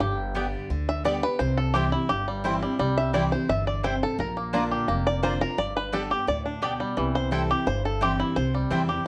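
A straight, driving 4/4 pulse carries this short, rustic bluegrass cut, with a twangy, percussive fingerpicked banjo up front taking the melody as a solo throughout. Behind it, a full-bodied dreadnought guitar with fresh strings and audible finger squeak picks the accompaniment, a thumpy gut-string upright bass plucks the low end, and a bright, woody mandolin adds double-string stabs from 0.3 seconds. The whole recording sits in light reverb and carries the worn, warbly pitch drift of old cassette tape.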